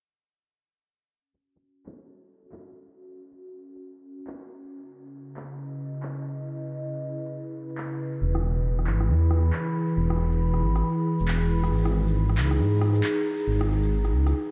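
An overdriven electronic shaker, handclaps and rim click open this melancholic, ghostly future garage piece at 1.3 seconds, at 137 BPM with a swung 4/4 feel, sounding as if re-recorded in a large room. At 2.5 seconds a warbling, nostalgic, lo-fi tape-like pad fades in, its detuned chorused sustained chords moving through F#m, C#m7, E and G#m under a filter sweep. At 8.2 seconds a deep, rumbling detuned saw bass with tube saturation arrives up front, all within a dreamy, low-pass-filtered mix soaked in a huge ambient reverb, in an excerpt cut from a longer piece.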